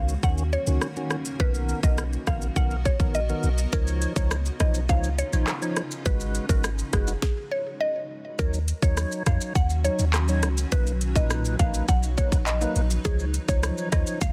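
An up-front, overdriven island pop drum kit with a tight kick, sharp snare and metallic hats drives this hypnotic, sultry dancehall excerpt, over a deep, boomy 808-style bass, a fat tonewheel organ with key click and slow rotary speaker pumping under sidechain compression, a cloudy granular pad, a woody, mallet-like synth pluck carrying the melody through chorus, phaser and delay, and bright maracas and timbales joining in the background at 3.7 seconds before a stop from 7.2 to 8.4 seconds in a dense, heavily limited mix.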